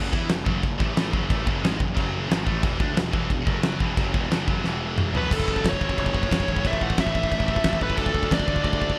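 Dark and aggressive, this 180 BPM heavy metal excerpt in F# minor pairs two bright, picked high-gain rhythm guitars, one of them scooped, sitting in the background on a distorted riff, with a growly, overdriven fuzz bass and an up-front big-room drum kit of fat snare, punchy kick, toms and crash, whose fill at 4.6 s ushers in a dark, distorted lead guitar melody with digital delay from 5.2 s, all framed by light reverb and bright 1980s-style digital production.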